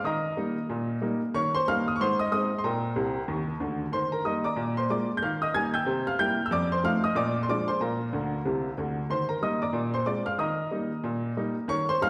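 A solo upright piano opens this swinging, playful stride jazz at 186 BPM in Eb major, its clear, woody tone carrying audible action noise and an intimate, up-front presence as it ranges from C2 to Ab6 over a swung 4/4. Brief fills arrive at 3.0 s and 8.1 s, and the harmony moves through Eb, Ab, C7, F7 and Bb7 before settling back on Eb. A lush recital-hall reverb places the listener further back in the room, and this 12-second passage is cut from a longer piece.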